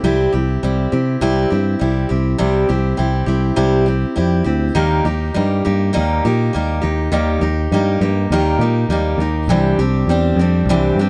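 Jangly and warm, this short excerpt of folk rock and heartland rock moves at a steady 101 BPM in a straight 4/4. A picked steel-string acoustic guitar carries the accompaniment, its bright, full-bodied dreadnought tone sitting up front in the mix. Beneath it, a picked electric bass plays the low end with a growly, punchy sound that comes across direct and amped, also placed close and forward. Both parts play together throughout the 11.1 seconds, moving from a C chord into Eb at 4.8 seconds, where the second section begins, before settling on Cadd9 near the close. A light reverb gives the pair a little space.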